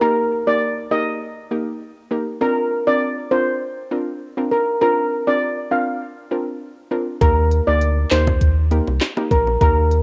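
This short cut from a longer dancehall piece has the hazy, tape-worn sound of a home cassette recording, set in a light digital ambience. A metallic, shimmering steel pan carries the melody up front from the start, struck with medium rubber sticks and colored by cassette saturation. Beneath it, a soft, round pluck with a dark, decaying tone and a filter sweep plays accompaniment, thickened by chorus and pumping with sidechain movement. The bouncy, summery groove sits at 100 BPM in Bb major, moving from Eb to Bbadd9 and back to Eb. At 7.2 seconds a deep, sine-like sub bass and an electronic afro-pop drum kit arrive together, with a knocking kick, sharp snare, smooth hi-hat and handclaps pushed forward. Tight, high-tuned bongos played with hard hands join in the background at 8.3 seconds.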